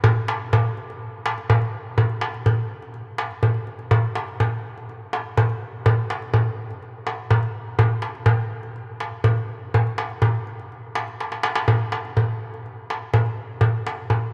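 A vast, echoing space surrounds this short cut from a longer Arabic piece, its cathedral-like reverb hanging in the air long after each stroke. At its centre is a single darbuka, a metal-shell drum played up front with hard hands, its crisp attack carrying a vintage, band-limited character. The groove sits at a straight 124 BPM in 4/4, and the music shifts into a new section at 3.9 seconds. A brief drum fill arrives at 11.2 seconds before the drum stops at 14.2 seconds. Despite its sparse makeup, the recording carries a longing, soulful mood.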